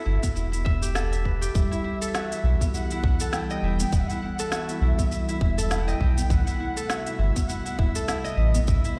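Heard through a big sound system in a bare room with large studio reverb, this mystical, earthy organic downtempo fragment in E minor moves at 101 BPM with a swung feel, as fingerpicked, ringing Celtic harp arpeggios and a breathy, flute-like synth lead with tremolo, chorus and digital delay float over a round, up-front sine sub bass that pumps against a tight electronic kick, while a produced kit of woody snare, smooth hi-hats and shaker keeps time, a very quiet, pure quartz singing bowl enters at 1.5 seconds, and a warbling, nostalgic, lo-fi pad slips into the background at 2.1 seconds before the harmony shifts from Emadd9 to Amadd9 at 6.3 seconds.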